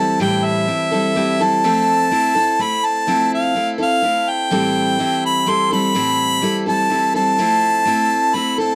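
A clear harmonica with a light vibrato carries the melody in a classical style, sitting up front over a warm, full-bodied picked steel-string acoustic guitar for the whole 8.8 seconds of this brief fragment of a longer acoustic folk piece. At 125 BPM in a straight 3/4, the tune moves through A minor, alternating between Am7 and Fmaj7, with the two instruments close and intimate in a dry small-room sound that recalls a 1970s studio. The mood is intimate and wistful.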